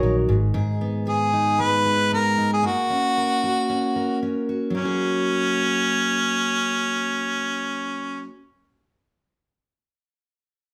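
Easy-going and carefree, this short acoustic pop fragment, cut from a longer piece, rests on a full-bodied, up-front picked steel-string acoustic guitar, with a dark, foam-muted vintage electric bass sounding only in the first 0.5 seconds. A clear harmonica takes the melody from 1.1 seconds, its smooth top and light vibrato sitting forward in the mix. The chords move from G#m to F#/A# before settling on F#add9 as the second section begins at 4.7 seconds, all heard as a band playing live in one room with moderate large studio reverb.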